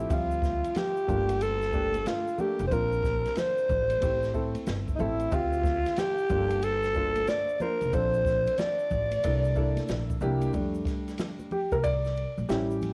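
A growling alto saxophone carries the melody up front in this smoky, cool jazz-hop excerpt at 92 BPM, its raspy subtone and vibrato sitting over swung sixteenths and a Dm11, Gm9, Bbmaj9 and Am7 progression until it stops at 10.2 seconds. A dark, worn grand piano with audible action noise accompanies throughout and takes a solo from 10.5 seconds over an F69 chord, while a woody pizzicato upright bass and a small-room jazz kit with a boomy kick and rolled-off top underpin it. Bright, close congas and tube shaker sit in the background, and the saxophone, piano and drums carry cassette tape coloring, with plate reverb on the saxophone and piano, in a home recording on cassette.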